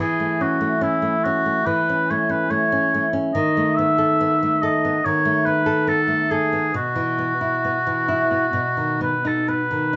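The rhythm moves in a rubato 4/4, hovering between 66 and 73 BPM so the pulse breathes freely rather than marking strict time. This tender, lyrical romantic duo pairs oboe and nylon-string guitar, both playing throughout this 10-second passage cut from a longer piece. The oboe carries the melody between E4 and E5, its warm tone shaded with vibrato and a soft attack, sitting up front yet with a roomy, slightly distant quality. Beneath it, the classical guitar fingerpicks the accompaniment from B2 to A4, acoustic and close. The harmony moves from A69/E to B7/D# at 3.4 seconds, then settles through Bsus4 onto B at 8.6 seconds. The two players share one room, with a moderate large-studio reverb and a gently rounded top end giving the sound an intimate, mellow glow.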